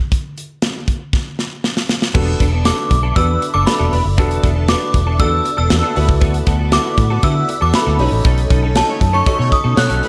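A straight 118 BPM boogie-funk groove opens on a polished, airy studio drum kit with bright cymbals, tight kick and gated reverb, and a fill leads into the full band at 2.1 seconds, where a round, foam-muted electric bass sits up front beside a warm grand piano and a dark, slightly broken-up picked guitar riff with chorus. Above them, a lush string machine holds soft-attack phased chords in the background while a mellow, inharmonic FM synth chime rings out the melody over E7sus4, D6 and B9 harmonies. A clear pop-style horn section with light vibrato adds a second line at 8.9 seconds during a band accent, keeping this smooth, danceable excerpt from a longer piece gliding along.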